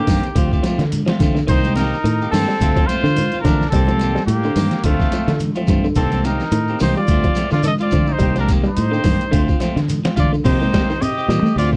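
Driving and hypnotic, this short afrobeat cut from a longer piece moves at 107 BPM in C dorian, with a light 16th-note swing and a dry, close 1970s-style studio sound. A warm trumpet with light vibrato carries the melody, shadowed by a bright, smooth-topped trumpet on a lower second line that trails a tape echo. Underneath, a round, foam-muted fingered electric bass sits prominently, while a clean electric guitar plays stabs and a slightly broken-up guitar through a small old amp spins lo-fi arpeggios in the background, bathed in spring reverb. The gritty, compressed trip hop sampler-style drum kit, pitched down with a thumpy kick, medium-tuned snare, hi-hat, ride and crash, anchors everything, and high-tuned congas and a grainy shekere sit distant in a large room behind it. The harmony rocks steadily between Dm7 and Cm7, landing on Cm7 as a brief new section opens at 10.4 seconds.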